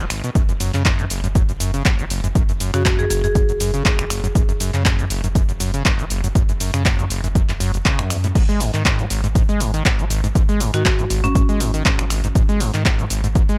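An up-front, punchy electronic kick drives this gritty acid house excerpt alongside a tape-warm analog drum machine of hi-hat, shaker, handclaps, finger snaps and crash cymbal over a lightly swung 4/4 groove. A squelchy, resonant sawtooth acid bass riff with filter sweeps, chorus, overdrive, digital delay and sidechain pumping rides alongside a deep, round sine sub bass thickened by tube saturation. A woody marimba struck with hard mallets adds brief dub-echoed melodic phrases at 2.7 and 10.7 seconds, in a dry, close mix.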